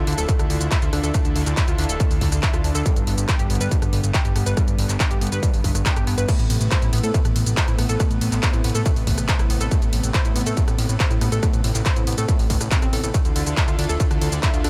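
This excerpt of driving, bittersweet uplifting trance opens with a lush, detuned pad holding sustained chords and a round analog pluck spinning arpeggios through chorus, tape coloring and digital delay, both breathing with sidechain pumping. A fat sawtooth bass sits beneath them from the start, its mellow, sustained tone shaped by a moving notch. At 0.1 seconds a layered techno kit of crash, ride, hi-hat, handclaps, rim clicks and shaker enters with its own gritty overdrive, and at 0.3 seconds a distorted, overdriven kick arrives up front. The 140 BPM groove in 4/4 moves through Dmadd9, G and Amadd9 in A minor before returning to Dmadd9 at 13.1 seconds. The mix is dry, with little reverb, letting the pumping synths and distorted kick drive the track.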